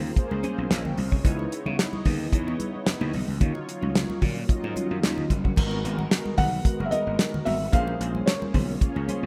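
A growly, overdriven slap bass sits up front in this danceable early-eighties boogie funk excerpt at 111 BPM in G# minor, beside a damped 70s kit with a tight kick and dark cymbals, while soft-handed, high-tuned congas and a clean, compressed electric guitar riff sit further back. A round, detuned synth brass with a filter sweep and ring modulation fills out the chords over a silky string machine with phaser and ensemble chorus, moving through minor ninth chords. At 6.4 seconds a felt-muted upright piano enters with an intimate melody, its action noise audible in a rough home demo mix with light small-room reverb.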